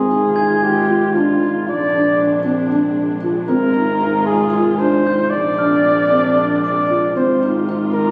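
Contemporary instrumental chamber music in an uneven 7/8 meter, this pensive, restless excerpt moves at 229 BPM counted in eighths with a straight feel, tuned to A4 = 439 Hz. A flugelhorn carries the melody up front throughout the 8.1 seconds, its jazz-style solo voice rich with vibrato and a smooth top. Beneath it, a felt-muted upright piano spins soft, boxy arpeggios with thick felt and audible action noise, while a bowed, con sordino double bass holds a veiled, distant low line. A dark symphonic string section sustains lush, expressive chords in the background, and a glockenspiel struck with rubber mallets adds bell-like, ringing shimmer from 0.0 to 1.7 seconds and again from 5.1 to 7.4 seconds. The harmony alternates between Ab6 and Bb9, and the whole is bathed in a wet scoring-stage reverb, heard as if captured on a phone in a club-like room.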